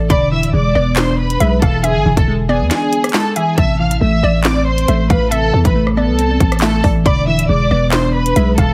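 A half-time drill groove at 138 BPM in A harmonic minor sets a dark, tense mood, with an electronic drum kit of hard-clipped kick, sharp snare, bright hats, handclaps and rim clicks (the kick drops out from 2.7 to 3.6 seconds), a growling, buzzy 808-style bass up front, a lush, low-pass-filtered studio violin section carrying the melody with vibrato and portamento over E7 and Amadd9 chords, a glassy, detuned wavetable pluck with chorus and low-pass filtering for accompaniment, and a hollow, bouncy square pluck with chorus and digital delay sitting in the background, all in a dry, heavily compressed, radio-ready mix.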